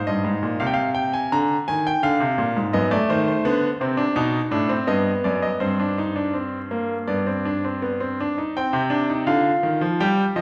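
Moving in a straight 4/4 at 83 BPM, this short cut from a longer baroque-style three-part fugue in C minor feels contemplative yet driving. A lone grand piano, brilliant and up front with audible action noise, spans F#2 to Bb5 through a harmonic path from Fm and Ddim to F#dim7, then Gsus4 and G before settling on Cm at 8.6 seconds. The intimate, polished piano tone sits in a wet recital hall reverb that lends the close of the passage at 10.4 seconds a sense of lingering space.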